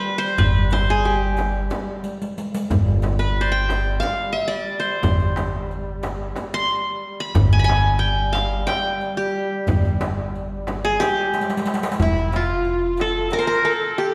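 Turkish makam ensemble music in 7/8, stately and festive, cut from a longer piece and set in the wet reverb of a church or concert hall. A bright, fingerpicked qanun carries the melody up front over a mellow duduk drone, a woody pizzicato upright bass, and a percussion bed of crisp, saturated metal-shell darbuka, a dry frame drum in the background and a riq with dark jingles, with drum fills at 2.0 and 11.3 seconds. At 12.0 seconds a breathy, very quiet ney and a distant, sul tasto violin section enter together on a second line.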